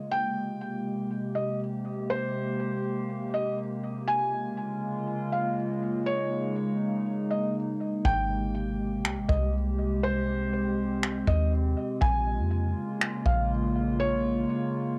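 Atmospheric cloud-rap in a half-time hip hop feel, this floating, blissful excerpt drifts over a warbling, detuned pad that holds sustained chords from the first moment, colored by chorus, its own reverb, sidechain pumping and a cassette-tape haze. A felt-muted upright piano carries the melody in a high register, soft and intimate with audible action noise, its tone darkened by a low-pass filter and trailed by analog delay. At 8.1 seconds a round, sine-like 808-style bass arrives alongside a vintage brush drum kit with finger snaps and a punchy kick, its top end rolled off and its sound given a tape treatment. The harmony rocks gently between two lush chords, lending the piece a nostalgic, dreamy sway. Everything sits in a damp, close booth ambience with the grainy character of a home cassette recording.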